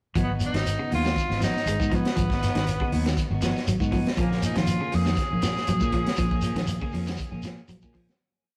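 A straight 4/4 afrobeat groove at 119 BPM, in G# dorian, is driven by a crunchy breakbeat kit with a punchy kick, high-tuned snare and gritty, saturated hi-hat sitting up front, joined by a close, grainy shekere and a round, foam-muted fingered bass playing a syncopated riff. Over a move from G#m7 to A#m7 at 4.2 seconds, a bright tenor saxophone with vintage vibrato states a motif-based solo melody, while a twangy, slightly broken-up guitar plays a background ostinato of arpeggios and a clean guitar strums upper chord stabs through spring reverb and tape echo. The driving, hypnotic piece has a rough rehearsal-room sound in a moderate stone room and fades out from 6.2 seconds to its end at 8.2.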